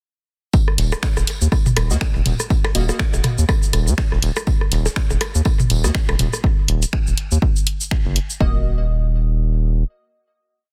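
A hypnotic, clinical minimal techno piece in Eb minor at 122 BPM with a swung 16th feel opens at 0.5 s on a punchy, up-front four-on-the-floor electronic kick and a dry, dark looped reggae breakbeat with edits tucked in the background. It is soon joined by overdriven clicks and blips in cross rhythm from a minimal click kit, a programmed house kit of hats, cabasa and snaps, and a round, wave-folded analog bass rolling in staccato with sidechain pumping. From 1.9 s sparse, crisp, detuned wavetable chord stabs echo through delay as one shape moved in parallel. The reggae breakbeat and click kit drop out around 6.4 s, the kick and house kit fall away around 8.4 s, and the bass and stabs then carry a final Ebm chord.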